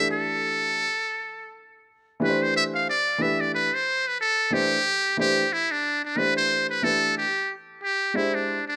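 Warm yet cool in mood, this short excerpt from a longer piece is a jazz-tinged hip hop groove in C major at 91 BPM in 4/4, with a 16th-note swing that gives it a relaxed lilt. A trumpet with a metal mute carries the melody up front, its buzzy, breathy tone thin and brilliant with a soft attack, a smooth top and light vibrato, and it takes a solo over the first 4.2 seconds. Beneath it, a dark upright piano supplies mellow, woody accompaniment, sitting close and intimate with audible action noise and a vintage character, treated with plate reverb. The harmony moves from a rootless C through Dsus2 and G, returns to C, then darkens through Emadd11 before landing on an E7alt near 8.1 seconds. The whole thing has the feel of a rough home demo, set in a moderate small room.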